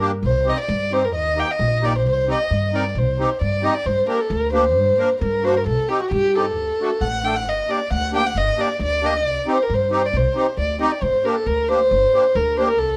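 In a straight 2/4 that keeps speeding up, this bittersweet, soulful klezmer excerpt sets a dark, intimate violin melody, bowed sul tasto with vibrato, a soft attack and a touch of plate reverb, over reedy, sweet accordion chords in a light tremolo tuning and a woody, thumpy pizzicato upright bass on gut strings, all three up front in a small room, with lossy compression artefacts.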